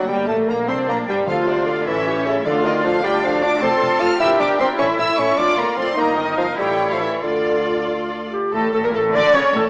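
Lilting in 6/8 with a rubato feel, this stormy, dramatic classical-period orchestral fragment sets a warm, background violin section's melody against a focused second violin line, rich violas and cellos, bowed double basses and an up-front bassoon, with soft-mallet timpani sounding briefly from 1.3 s and a mellow clarinet stepping forward at 8.3 s, all bathed in a wet scoring-stage reverb heard through a small speaker.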